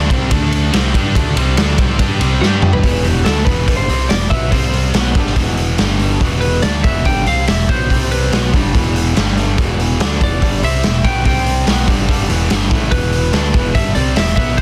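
Hard rock excerpt in E minor at 143 BPM, aggressive and heavy, where a saturated, up-front garage drum kit with a tight kick and medium-tuned snare drives under a growling, punchy overdriven bass and two picked riff guitars sitting in the background, one biting and one cranked and bright, until a drum fill at 2.4 seconds brings in a slightly broken-up, compressed lead guitar melody with digital delay over Em, C5 and G5 changes, all in a dense, dry, heavily limited mix.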